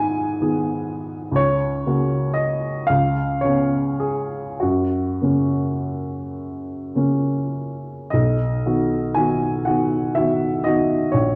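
Classical romantic nocturne for solo upright piano, dreamy and serene, drifting in rubato 12/8 at a slow 32-44 BPM as its mellow, woody, up-front tone spans A#1 to B5 over chords moving from G#m through C#7 to F# major before settling into B major at 8.1 s, all set in a dark, reverberant recital hall in this short fragment of a longer piece.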